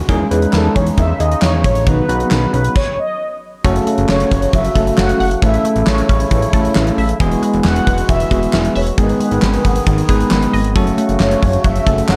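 Synth-pop at 135 BPM, bright yet wistful and cut from a longer piece, where a gated 80s drum kit with a fat snare and handclaps sits up front over a thick, detuned analog bass, a barky, bell-like tine electric piano, reedy hand-pumped harmonium chords and a squelchy resonant blip pluck tucked in the background with phaser and analog delay, while a round, brassy synth lead with chorus and vibrato carries the melody from 0.3 seconds; after a brief stop from 2.8 to 3.6 seconds, the chords move through F#m, A and Eadd9 in a dark production with plate reverb and a faint mains hum.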